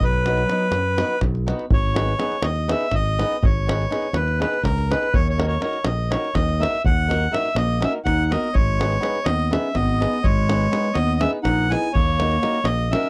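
A reedy, airy accordion leads this wild, virtuosic Balkan wedding-band tune in 7/8, sitting up front and clear against a growly, bright fingered electric bass and a deep davul. A fingerpicked acoustic flamenco guitar adds accompaniment, while a dark, soft-attack clarinet plays a classical-style second line, heard briefly at the start and returning at 7.6 s. The dry, close recording has a 1970s studio character as the chords move between B, G#m and D#m.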